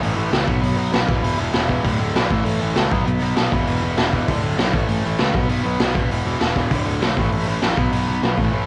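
Energetic and upbeat, this short punk rock clip, cut from a longer piece, charges along at 198 BPM in a straight 4/4. A bright, double-tracked distorted electric guitar sits up front playing a picked, overdriven riff through a cassette-tape grit, cycling through B5, E5, D5 and A chords. Beneath it, a fuzz-toned picked electric bass adds an amped, overdriven low end. The raw garage drum kit, also up front, brings a punchy kick, a medium-tuned snare and hi-hat with a saturated, mid-forward character and a rolled-off top. The whole take has the rough, homemade feel of a cassette recording with a touch of studio reverb, and all three parts play from the start until about 8.5 seconds.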